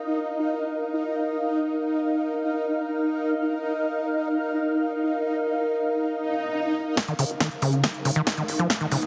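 The rhythm floats in free time for most of this short psychedelic trance excerpt, its intense, alien mood carried by sustained sound rather than a beat. A bright, bubbling sawtooth texture holds chords while its resonant filter jumps in random steps, and an ethereal, airy pad of detuned triangle and sawtooth tones glows alongside it with a mellow, slowly moving notch; both sit up front, shimmering through chorus and their own reverb and breathing with sidechain pumping. An electronic swell and riser rises from 6.2 seconds into a build-up and drum fill at 7.0 seconds. There a punchy, layered kick and an up-front dance kit with a punchy snare and crisp hats arrive, along with a squelchy, gritty acid bass riff whose distorted, resonant plucks are thrown into delay. A tight sequencer bass, blending sawtooth, square and wave-folded sine tones, drives along very quietly underneath. The whole mix is bathed in a lush digital hall and squeezed into a heavily compressed, radio-like sound.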